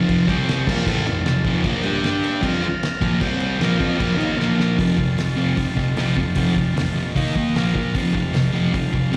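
Raw and swaggering, this garage rock cut moves at 152 BPM in a straight 4/4, centred on F major. A thick, fuzz-drenched electric guitar sits up front, double-tracked and picked, driving a riff that runs through the whole clip. Behind it, a vintage combo organ holds buzzy, clean sustained chords in the background, breaking out for a short fill at 1.1 seconds. The cloth-damped drum kit sounds muffled and gritty, with a fat snare, tight kick, dark cymbals and a rolled-off top, and it rolls through a fill just before the second section arrives at 4.8 seconds. The whole take carries the feel of a live gig heard through the venue's PA, with moderate club ambience and a recital-hall reverb around the band, and it is cut from a longer piece.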